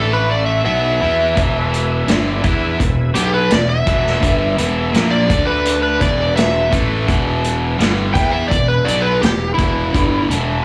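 Blues rock in a power-trio mould with a southern rock edge, this raunchy, gritty excerpt moves at 84 BPM in a straight 4/4 feel, centred on E mixolydian and heard as a live club set through the venue's PA with a light room reverb. Up front, an overdriven slide guitar played with fingerpicks carries the melody between E4 and G5, its bright tone trailed by slapback echo. Beside it, a cranked, double-tracked stack guitar digs into a picked riff from E2 to E4, coloured by overdrive, spring reverb and its own slapback echo, while a fuzz-laden fingered bass growls and punches down between E1 and E2. A very quiet, thick tonewheel organ holds sustained chords under everything, its overdriven voice turning through a slow rotary speaker with chorus vibrato. The vintage acoustic kit enters at 1.4 seconds with a punchy kick, medium-tuned snare and hi-hat, sounding saturated and rolled off at the top, as the harmony moves from A5 to E, then through D5 back to E.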